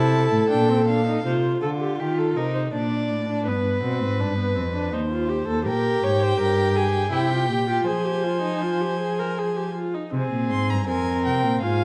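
Heard in a dark, warm recital-hall ambience, this solemn fragment of a baroque-style string quartet fugue in triple time sets a smooth, up-front cello bass beneath a vibrato-rich viola with airy bowing and an evenly bowed second violin, while the first violin's expressive, portamento-laced melody sounds briefly at the opening, stops at 1.2 seconds and returns at 5.7 seconds.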